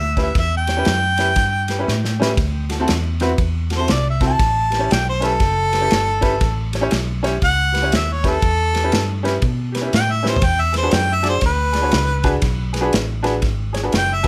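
An overdriven harmonica opens a rollicking, gritty electric blues shuffle in A mixolydian at 119 BPM, playing a jazz-style solo up front with vibrato and scooped notes over a dark, round, foam-muted fingered bass that sits punchy and close. A bright upright piano with woody tone, audible action noise and long sustain joins at 0.2 seconds alongside a soul drum kit in a small, pumping room, its tight kick, medium-tuned snare, ride and toms breaking into fills at 1.9 and 10.2 seconds. Light reverb surrounds this short cut from a longer piece as the harmony moves from A9 to D9 and back, reaching E9 at 10.4 seconds.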